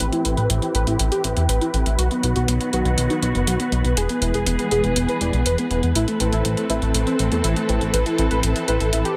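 Lush, lightly reverberant and retro, this short cut from a longer italo disco track moves at 121 BPM with a danceable, bittersweet mood, as a thick, detuned sawtooth unison lead carries the melody through analog chorus, cassette tape and tape echo over bowed, vibrato-rich symphonic strings with a filter sweep, an up-front, tube-saturated synth bass with a plucky pulse-wave tone, glossy chorused polysynth stabs entering at 0.2 seconds with their own filter sweep, and a sampler-style electronic hi-hat, all cycling through Amadd9, B and E.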